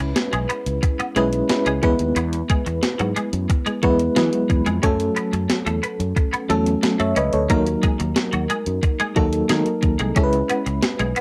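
A dramatic, nostalgic 1980s-style pop excerpt in C# minor at 90 BPM, moving through C#m7, E, F#m and D#m over a cassette home recording with a small room's short reverb. An up-front, mellow FM electric piano with tremolo carries the accompaniment while a bright, twangy twelve-string electric guitar plays a riff through ensemble chorus and tape echo, both with cassette tape coloring. Beneath them a dark, round fretless bass with transformer saturation holds the low end, and a thumpy, overdriven 12-bit drum machine of kick, snare and hi-hat sits up front.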